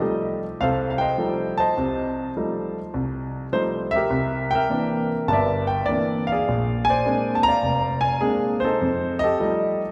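Solo jazz at 102 BPM in 4/4 with a swung eighth-note feel, this short cut from a longer piece sits in F mixolydian and has a warm, swinging mood. A lone grand piano, intimate and up front with its natural action noise clearly audible, spans from the low register to the upper middle, moving through F9, C9 and Bb9 before returning to F9 at 8.8 seconds. A wet concert hall reverb with a 2.3-second tail surrounds the piano, giving it the airy bloom of a church or large hall.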